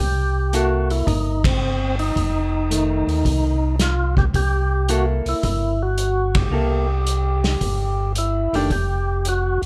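A percussive tonewheel organ carries the melody in a fat, clicky voice, its second-harmonic percussion and slow rotary speaker giving this greasy, bluesy soul jazz organ trio excerpt its bite. Beneath it a second tonewheel organ plays the bass line, round and mellow with a touch of vibrato and the same slow rotary swirl, sitting up front from the first moment. A vintage hollow-body jazz guitar enters at 0.5 seconds with dark, clean, picked accompaniment, alongside a vintage drum kit of hi-hat, ride, snare and punchy kick whose dark cymbals and rolled-off top breathe in a small, pumping room. The groove swings at 110 BPM in 4/4, moving through C6, F7 and C13 before landing on Fsus2, with band accents punctuating the phrase at 1.3 and 6.2 seconds. A light reverb wraps the fragment, which is cut from a longer piece.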